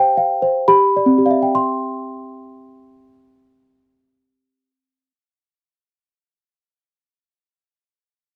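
A classical lullaby for solo small celesta in 3/4 at 66 BPM, in C major, tender and dreamy in mood, heard in a short cut from a longer piece. The celesta plays alone from 0.0 to 8.3 seconds, ranging from C4 to C6 with a bell-like, sweet tone from soft felt hammers, easing into a slowdown over the first 1.5 seconds as a G7sus4 and G7 resolve to C. The dry, close 1970s-style studio sound keeps the instrument up front and intimate.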